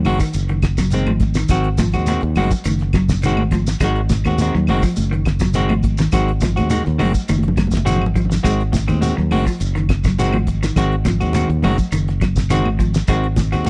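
Driving and hypnotic, this short afrobeat excerpt from a longer piece moves at 104 BPM in a straight 4/4, sitting on a single Ab7 chord in Ab mixolydian. A round, punchy fingered electric bass sits up front with the cloth-damped drum kit, whose fat snare, tight kick and hi-hat have a dark, rolled-off thud, and the kit breaks into a fill from 7.3 to 8.4 seconds. A clean, picked electric guitar plays low arpeggios bathed in lush chorus, while a semi-hollow guitar adds hollow-body stabs across a slightly higher range. Congas with a thick, damped skin and soft hands sit in the background beside woody claves, and a grainy, mellow shekere sounds distant, as if in a large room. The overall sound is a dry, close 1970s-style studio recording with small room ambience.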